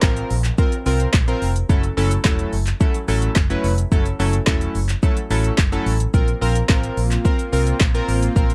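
Dance-pop at 108 BPM in a straight 4/4, this short excerpt feels euphoric and upbeat from the first beat. A deep house drum kit sits up front with a deep kick, woody snare, smooth hats, handclaps and shaker, while a dark, foam-muted vintage fingered electric bass gives a round, punchy low end, pumping with sidechain along with the keys. Chorused retro synth keys carry the accompaniment with a glossy, bright tone built from detuned pulse and sawtooth waves, pulse-width modulation and a filter sweep, their fast attack then decaying. A very quiet group handclap adds a crisp human touch from a distant large room, and a faint electronic downlifter passes through the first 1.7 seconds. The harmony moves from Bbsus2 to F#m7 at 1.7 seconds, and at 6.1 seconds, as it returns to Bbsus2, a soft, airy supersaw enters in the background with smooth, full-bodied sustained chords, all in a dry mix with little reverb.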